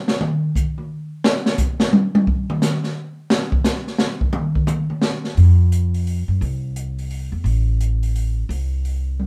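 Lightly reverberant and close, this cut from a longer modal jazz piece sounds like a band playing live in one room, swinging in 3/4 at 174 BPM with a spiritual, searching mood. An up-front acoustic drum kit opens with a solo of hi-hat, boomy kick, high-tuned snare and toms in a small-room setting. At 5.4 seconds the tonality settles in F major as a warm, woody, pizzicato upright bass with steel strings joins up front, carrying the low end alongside the drums to the close.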